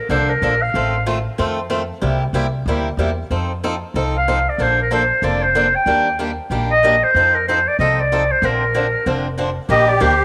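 This lively, swinging acoustic string swing excerpt in the jazz manouche style is cut from a longer piece. A breathy clarinet with subtone, vibrato and a slapback echo sits up front, playing a short melodic phrase at the start before returning at 4.2 seconds to carry the tune. Beneath it, a bright, boxy picked acoustic guitar with fresh strings drives the swing accompaniment, also placed up front, while a woody, thumpy pizzicato upright bass on gut strings anchors the low end. The harmony moves through major seventh and dominant chords, settling on an added-ninth chord before the close. Near the end, at 9.7 seconds, a reedy musette accordion with shimmering, wet tuning slips in with a brief second line, all held together by light reverb and a small-room ambience.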